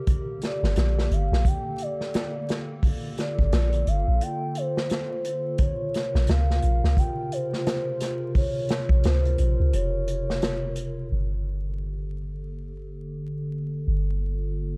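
A swung, unhurried 87 BPM groove in 4/4 from an acoustic drum kit, with a punchy kick and bundle-stick hits that sound roomy yet up front, drives this melancholic, cinematic trip hop excerpt until about 11.0 s. A deep, round 808-style bass sits up front beneath a warbling, nostalgic pad with chorus and built-in reverb, its chords moving from Gmadd9 to Bbmadd9 and returning to Gmadd9 as the second section begins at 11.1 s. Above them a pure, breathy sine lead with vibrato, portamento and tape echo floats in a high register, set in a dark production with studio reverb and vinyl crackle.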